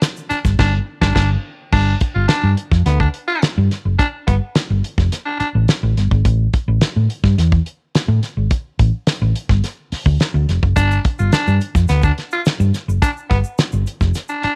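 A straight 4/4 funk groove at 106 BPM drives this energetic, playful excerpt, opening on a band accent over a G5 chord before dropping to a chordless riff and later moving through Asus4 and back to G5. A damped 70s drum kit with a fat snare, tight kick, hi-hat and crash sits up front beside a dark, round hollow-body fingered bass that holds the low end throughout, while a raspy, gritty baritone saxophone with light vibrato plays a punchy second line in the opening seconds and returns at 10.8 s. A grainy egg shaker ticks in the background at the start and again near the end, all in a small room ambience.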